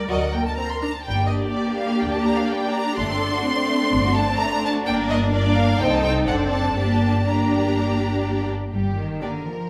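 A wet recital-hall reverb, about 1.5 seconds long, surrounds this lively, spirited passage, cut from a longer classical-period movement for string orchestra in G minor, moving quickly at 125 BPM in a straight 4/4. A clear, intense violin section carries the melody across a range of G4 to C6, while a second violin section, rich and focused with a smooth top, adds a second line from its entry at 0.1 seconds. Beneath them, a close, focused viola section fills out the accompaniment, a warm cello section with a soft attack shapes an expressive bass line, and a double bass section sits up front with a rich, expressive tone reaching down to F#1. Every section plays bowed with vibrato, giving the ensemble a lush texture. The harmony moves from D to G minor, passes through a D7 over G and diminished colours, and returns to G minor at 6.8 seconds, with the violins holding the melody until 9.7 seconds.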